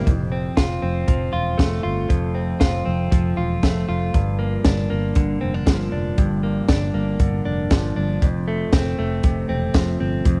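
Picked, clean, compressed electric guitar arpeggios with subtle chorus and a fingered electric bass that sounds round, dark and foam-muted open this nostalgic, youthful jangly indie pop fragment at 118 BPM in F major, joined a moment later by a dry, up-front compact cocktail drum kit with a high-tuned snare, punchy kick and hi-hat, as the harmony moves from F to Gm7 at 4.1 seconds and back to F at 8.2 seconds, with the guitar and drums tinted by cassette tape in a homespun studio ambience.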